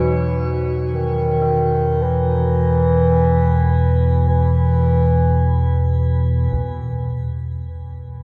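Dark ambient drone at a slow 53 BPM, desolate and unsettling, where a deep, rumbling drone sits up front under a mellow, distant bass clarinet melody hovering between D#3 and E3, an eerie, inharmonic synth bell arpeggiating with chorus, tremolo, shimmer reverb and tape echo, and a barely audible moody analog pad holding chords until a very quiet taiko hit at 6.5 seconds, when a filter sweep moves across the drone in a vast cathedral-like space with a cassette tape tone.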